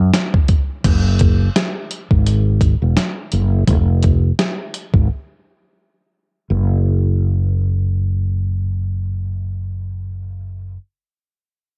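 A fretless electric bass opens this short jazz-hop excerpt, dark and round with a subtle chorus, sitting up front and moving low between E1 and G#1. A dusty soul sampler-style drum kit joins at 0.1 seconds with a thumpy kick, medium-tuned snare, hi-hat and crash, its gritty, compressed sound carrying cassette tape coloring and the air of a large room it was re-recorded in. The groove sits at 85 BPM in 4/4 with a gentle swing on the sixteenths, giving the hip hop beat a smoky, cool mood. The drums drop out at 5.1 seconds for a break, leaving the bass alone as the music moves into a second section at 6.5 seconds. The overall sound is close and dry, like a home cassette recording, with the bass continuing until the cut at 10.8 seconds.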